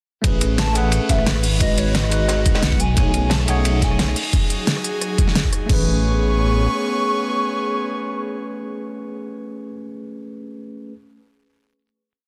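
A dense, heavily limited mix with lossy compression artefacts and a light small-room reverb carries this short, uplifting and dreamy liquid drum and bass piece at 176 BPM in A lydian, built on an Amaj9, G#m7, B13 chord cycle. In the opening drop, a gritty, thumpy electronic kick, a layered pop kit with a fat snare and crisp hats, and a dark, saturated looped breakbeat drive over a deep, rumbling detuned saw bass with long gliding notes. A clean tine electric piano with tape echo and an airy, breathy chorused pad hold the harmony, while a hollow, woody clarinet-like lead with vibrato sings hook phrases through to the final Amaj9 chord at 5.7 seconds, just before the drums stop at 5.8 seconds.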